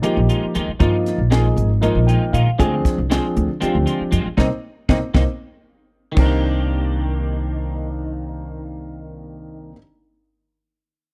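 A woody, thumpy upright bass sits up front in this slick, driving electric jazz fusion passage in 7/8, cut from a longer piece, with a dark, worn grand piano that carries audible action noise and a clean, twangy electric guitar playing compressed stabs through an ensemble chorus. A tight funk kit with a high-tuned snare keeps the straight feel, the piano adds a fill at 1.8 seconds, and the band hits an accent from 4.4 seconds while the drums fill from 4.6 seconds before stopping at 6.3 seconds. The harmony moves from Bb7sus4 through Dm7b5 and Cm7 to a closing Cm9 in a dry, close 1970s-style studio sound.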